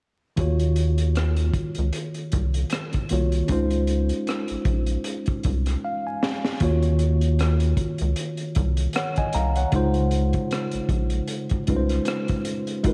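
Swung sixteenths drive this late-night, soulful neo-soul R&B excerpt, where a crunchy, gritty breakbeat kit with a high-tuned snare and tight kick sits under a rubbery, bouncy square-wave bass and a worn, slightly out-of-tune tine electric piano with light overdrive, the piano adding a fill at 5.4 s and the drums one at 5.8 s before the second section begins at 6.6 s, all inside a dreamy mix soaked in lush hall reverb and vinyl crackle.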